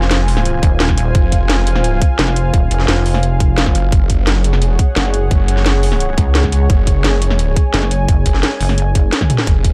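A snarling, distorted saw bass growls beneath a moody, detuned analog pad and a layered electronic drum kit with a cracking snare and metallic hats as this excerpt of dark, mechanical technical drum and bass opens at 173 BPM, with a pulsing, saturated pluck wobble bass and a tight layered kick joining at 0.6 seconds over a dry, up-front mix as the chords move from Fm7 to Gbsus2 at 3.9 seconds before a drum fill at 9.2 seconds.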